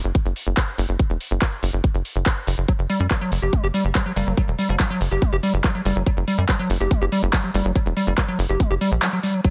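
A squelchy, resonant liquid acid bass riff enters at 2.7 seconds, its chorus, 12-bit sampler grit, sidechain pumping and digital delay sitting up front over a tight, punchy sawtooth sequencer bass and a tape-warm electronic kick in this hypnotic psychedelic trance excerpt at 142 BPM. A big-room electronic kit adds handclaps and overdriven metallic hi-hats, while a very quiet, juicy blip pluck surfaces briefly at 4.2 seconds. An evolving, detuned wavetable pad is barely audible at the very end, and the dry mix carries little reverb around an F# chord.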